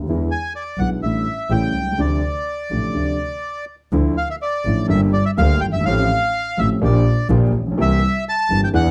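A concert grand piano and a bowed double bass open this melancholic, passionate tango fragment together, the piano accompanying with a deep, up-front bass register while the single bass player draws soft-attacked, sul tasto notes with gentle vibrato and a smooth, intimate top. At 0.3 s the bandoneon enters with the melody, its reedy, mid-forward voice sitting up front and carrying a short slapback echo. The pulse is in four but played with a rubato feel, and the harmony moves from dominant chords, including a suspended A7, into minor ones and add9 colours before closing on a C7. The passage states its opening theme twice, the second statement beginning at 3.9 s, and it is cut from a longer piece. The sound is dry and close, in the manner of a 1970s studio with little room reverb, giving the trio a warm, near presence.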